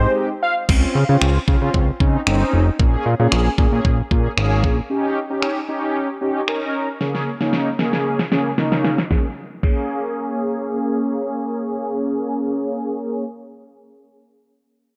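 Driving and confident, this dance-pop fragment opens with a brief delayed phrase from a fat, detuned sawtooth lead with a sub octave, then sets round, brassy chorused synth brass with vibrato and sidechain pumping over a thick analog bass that drops out at 4.8 seconds, while an up-front electronic pop kit with a knocking kick, fat snare, finger snaps and crash enters at 0.7 seconds and rolls into a fill before a new section at 9.1 seconds, all colored by light reverb and a worn, warbling cassette-tape haze with drifting pitch and a muffled top end.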